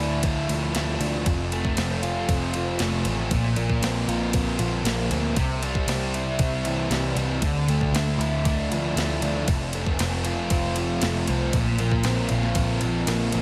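Shoegaze and dream-pop rock at 117 BPM in a straight 4/4, this brief 13.4-second cut from a longer piece carries a brooding, melancholic mood. A dark, double-tracked fuzz guitar sits up front playing the riff, its distortion touched with subtle chorus. Beneath it, a vintage foam-muted electric bass, picked and amped, gives a round, punchy low end. A sampler-style 12-bit drum machine enters at 0.2 seconds with a thumpy kick, a medium-tuned snare and ride cymbal, overdriven and re-recorded in a small room. The harmony cycles through Dmadd9, F, Bbsus2 and C, and the whole mix is soaked in a lush two-second hall reverb that gives it a dreamy digital ambience.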